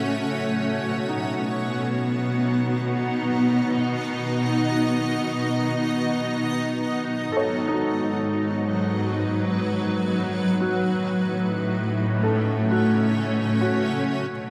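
A cloudy, detuned granular pad sits up front from the opening moment, holding slow-blooming chords in B mixolydian, while a felt-muted upright piano traces soft, mellow arpeggios through tape echo and a bowed cello section supplies a smooth, vibrato-rich bass line, both fading in across the first 14.3 seconds. This luminous ambient excerpt moves at 69 BPM in a straight 4/4, drifting from B to G#m7 at 7.3 seconds and F#m/A at 10.8 seconds. The piano stays intimate in the background, the cellos carry a touch of tube saturation, and a wet cathedral reverb with a long 6.8-second tail bathes the sound.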